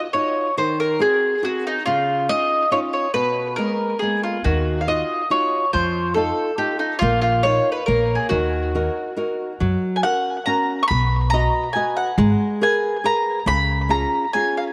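Sunny and lively, this Italian folk serenade excerpt moves at 140 BPM in 3/4, with an up-front flamenco guitar fingerpicking warm accompaniment under a warm, woody, double-strung mandolin melody colored by tape echo, while a dark, thumpy pizzicato upright bass on gut strings joins at 4.5 seconds; after a brief break at 9.2 seconds the music shifts from E-flat minor to F-sharp major at 9.6 seconds, all set in a moderate plate reverb.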